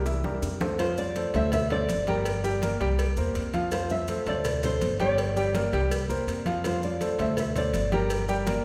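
Relaxed and danceable, this Cuban son and guajira passage opens with a brief fill before settling into a looping C7–F–D5–Gm progression. A dark, thumb-plucked nylon-string guitar carries the melody while a smooth, vintage grand piano sits up front with short-sustained arpeggios, and a woody, thumpy upright bass on gut strings anchors the low end. Tight, high-tuned bongos and cowbell, bright low-tuned congas set in the background and grainy maracas fill out the percussion, all bathed in a wet concert-hall reverb.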